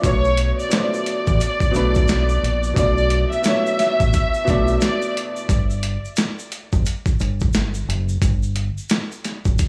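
A small, lightly reverberant room frames this dark, moody fragment of boom-bap hip hop, which rolls at 88 BPM in 4/4 with a swung sixteenth-note feel. Up front, a sampler-style drum kit of kick, snare and hi-hat sounds gritty and compressed, with a thumpy kick, a medium-tuned snare and overdrive, while a round, punchy fingered electric bass sits low and dark beside it. Over a single Bm7 harmony, a lush bowed violin section carries the melody with smooth vibrato and tape echo, filtered at both ends, as a woody, boxy upright piano with short sustain and a cassette-tape tint supplies the accompaniment. The violins stop at 5.1 seconds and the piano at 5.5 seconds, opening a break in which the bass carries on to 9.6 seconds and the drums through to the end at 9.7 seconds. Throughout, a grainy, vintage tube shaker sounds quietly in the background.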